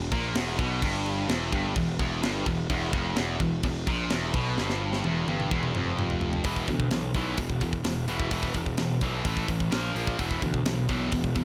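Heavy metal at 128 BPM in E minor, relentless and epic, drives a bright, double-tracked high-gain guitar riff over a growly, fuzz-overdriven picked bass and a tight, up-front acoustic drum kit with crash, hi-hat, kick, snare and toms, whose fill from 4.6 to 6.4 seconds leads into a shift at 6.4 seconds from E minor to E5, A5 and A#5 power chords, all set in studio reverb in this excerpt from a longer piece.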